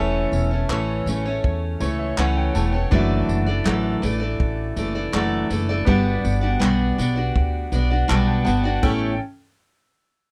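A dry, close studio sound in a 1970s vein frames this easy-going, sunny acoustic pop fragment, cut from a longer piece. Up front sit a picked steel-string acoustic guitar with audible finger squeak and a woody pizzicato upright bass, while a natural country drum kit with a punchy kick, crash cymbal, handclaps and tambourine enters at 0.3 seconds. Lower in the mix, a bright, slightly detuned upright piano with a worn, intimate tone and audible action noise adds fills at 1.4 and 7.7 seconds over chords moving from A/E through Dadd9/F# and Gmaj7 to A7.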